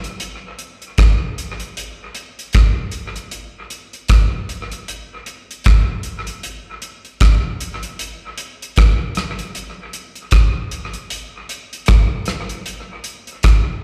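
A damped 70s drum kit carries this sunny, uplifting reggae fragment on its own, its dry, up-front hi-hat, tight kick drum and rim click treated with dub echo. The groove sits at 77 BPM in 4/4 with a 60% swing on the sixteenths, and the kit plays throughout the 13.7 seconds, which are cut from a longer piece. The sound is that of a live gig heard through the venue's PA, with a light recital hall reverb around the airy, polished drums.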